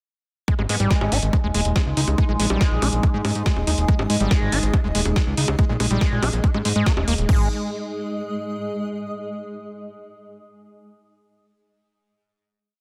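A punchy four-on-the-floor techno kick sits up front in this short, complete psychedelic trance piece at 141 BPM, with a crash cymbal on top, and the drop arrives at 0.5 seconds. The mood is psychedelic and alien. A second electronic kit adds a woody snare on the backbeat, metallic open and closed hats and high bongos, with a small-room character. Beneath them a fat, saturated analog bass rolls in sixteenths, while a gritty, squelchy overdriven acid line runs a 16-step pattern with accents and slides, carrying distortion, delay and sidechain pumping. An overtone-sweeping drone of sustained, ring-modulated chords with chorus breathes with the same pumping, and a very quiet, nasal vowel-sweep wobble bass adds short phrases early on. A blurred granular cloud pad drifts in the background from 2.1 seconds and carries on through the final chord from 7.3 seconds, all within a dense, heavily limited modern master with light digital ambience.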